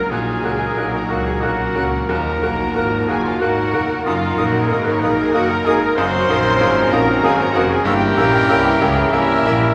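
In a rubato 3/4 at 93 BPM, this passionate, lush romantic movement for piano and orchestra unfolds as a short cut from a longer piece. The baby grand piano carries the melody with a clear, intimate tone, long sustain and audible action noise, joined by a muted violin section playing con sordino with veiled vibrato high above. Oboe, clarinet, a second muted violin section and an airy, close-miked concert flute weave second lines around it, while a muted viola section and a soft-attacked bassoon fill in the accompaniment. A dark French horn section and a very quiet, vintage-tinged trombone section hold sustained chords, a solo trumpet adds stabs on a single A#4, and muted cello and double bass sections anchor the bass with smooth, bowed tone. The harmony moves from F#/A# through D#m and Ebm7/Gb to a Gdim7 at 7.9 seconds, all bathed in the wet reverb of a scoring stage.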